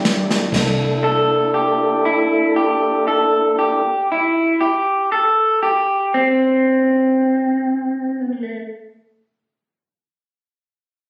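Caught on a phone in a small, moderately reverberant room, this gritty, rollicking slow-blues fragment in 12/8 opens with a brief brushed drum fill of dark crash, snare and boomy kick, the kit dropping out at 0.8 seconds, while a clear tonewheel organ on slow rotary speaker holds a rootless C9 chord moving to C13 over a round, foam-muted bass until 3.8 seconds, and a slightly broken-up, compressed guitar through a small old amp carries an up-front second line with slapback echo through 8.6 seconds.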